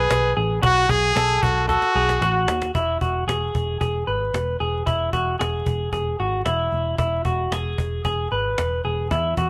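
Jangly indie pop with a youthful, breezy mood, cut from a longer piece, where a brilliant, punchy trumpet with light vibrato carries the melody for the first 2.4 seconds over fingered guitar arpeggios through a small old amp, slightly broken-up and lo-fi with tape echo. A dark, round, foam-muted picked electric bass sits up front beneath them, while a snappy cajon played with hard hands plays a fill from 1.7 to 2.7 seconds as the harmony moves from B5 to Eadd9. The recording has light reverb, vinyl crackle and lossy compression artefacts.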